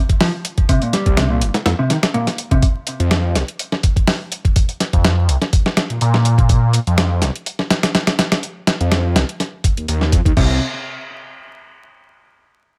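A thick, swirling, saturated detuned saw bass with phaser enters at 1.1 s and drives this swaggering, raw 124 BPM breakbeat cut from a longer piece, set over a gritty, tape-warm sampler-style kit with a thumpy kick and medium-tuned snare in a small room, a bright layered electronic hi-hat in the background, and a dark, clean fingered electric guitar riff with spring reverb and delay that plays over a C7 chord until 2.6 s, when the harmony moves to Fsus4, and returns briefly at 10.4 s, all beneath a layer of vinyl crackle.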